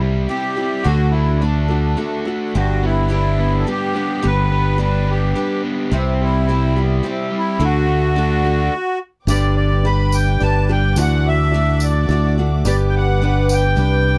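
A sweet, airy accordion with light tremolo tuning carries the melody through this hopeful folk rock and heartland rock excerpt at 107 BPM in 3/4 and G major, over an up-front fingered electric bass and a warm, picked steel-string acoustic guitar, while a dark, double-tracked overdriven electric guitar riff plays until 8.7 s before a brief stop; from 9.3 s a gritty, barky reed electric piano and soft, sul tasto chamber strings join in the background alongside a jingly tambourine, in a dry, close 1970s-style studio sound.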